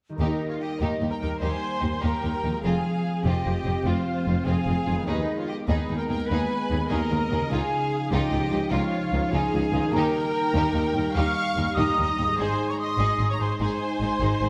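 Set in a moderate scoring-stage reverb, this heroic, soaring cinematic excerpt moves at 98 BPM in a straight 12/8 in Eb mixolydian, with chords running from Eb through Fm, Abmadd9/Eb and Dbadd9 back to Eb and on to Ab. A ringing concert harp plays arpeggios in the background from 0.1 s, while a lush, vibrato-laden violin section carries the melody. A pure, soft-attack flute section and a rich second violin section in the background add second lines, and clear violas fill in the accompaniment. Dark French horns hold sustained chords in the background over a bowed bass of focused cellos and smooth, even double basses.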